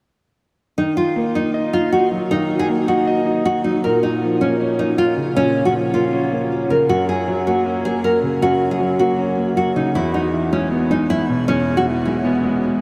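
Set at 157 BPM in 4/4 with a half-time feel, this dark, hard-hitting hip hop piece in Eb minor moves slowly and heavily. From 0.8 s a fingerpicked nylon-string guitar carries the melody up front, its full-bodied, deep classical tone touched with a subtle chorus and delay. Alongside it, from the same moment, a dark grand piano supplies the accompaniment, mellow, smooth and vintage in character, with a long sustain that lets its notes hang. The harmony steps from Ebm to Bbm, then to Gb, and lands on E. The whole mix is soaked in a huge ambient reverb with a 7.2-second tail, giving the cut-down passage a dreamy, cavernous atmosphere until both parts stop at 12.8 s.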